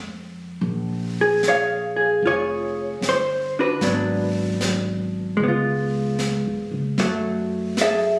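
Captured on a phone in the room with light reverb and compression, this tender, romantic swung jazz ballad, cut from a longer piece, sets a dark, clean, up-front hollow-body electric guitar comping through seventh chords over a woody, growly pizzicato upright bass, while an airy brushed kit with a high-tuned snare and hi-hat slips in at 0.6 seconds.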